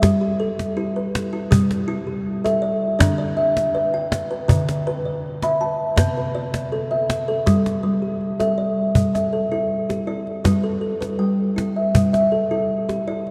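This dreamy, gentle meditative world piece opens with kalimba and cajon together, moving at 81 BPM in a straight 4/4 feel in G major. The kalimba sits up front, spinning soft, mellow arpeggios from C3 up to B5 with a woody, hollow-box tone and airy, ringing fingertip plucks. Beside it, the cajon is snappy and acoustic, with audible snares and hard hand strikes that stay close and dry. The harmony moves from G through D5 and C to G5, then returns to G when a new section begins at 9.0 seconds. The recording is set in a vast, echoing cathedral space with a long 6.1-second reverb and a cassette-tape character, and this brief cut from a longer piece ends at 13.3 seconds.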